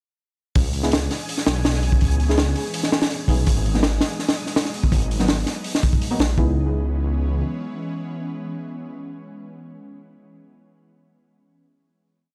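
A dry, gritty hardware recording in a small room carries this atmospheric, frenetic drum and bass piece at 165 BPM in C# minor: a crunchy, heavily chopped breakbeat with a punchy kick and high-tuned snare drives a thick, menacing detuned saw bass from 0.6 seconds, while sparse echoing chord stabs move one shape in parallel, a breathy wind-like noise texture holds a high note in the background, and an ethereal chorused pad with a slow attack joins the stabs in ringing through the final C#m7 chord after the drums stop at 6.5 seconds.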